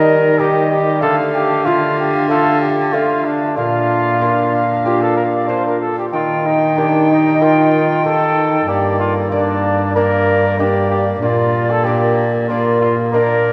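Classical and courtly in mood, this festive 13.5-second excerpt moves at 94 BPM in a straight 4/4, set in a wet cathedral reverb with a 4.9-second decay. A mellow, distant cornet with light vibrato carries the melody up front, while an airy, chiffy tenor recorder with straight, tongued tone sings a second line above it. Beneath them, a delicate fingerpicked lute with double gut strings sits in the background, a bassoon with vibrato adds accompaniment, and a close, reedy cello bowed by a single player with gut-string tone anchors the bass through chords moving from Eb and Dm to Bb, back to Eb, then to Gm and Bb.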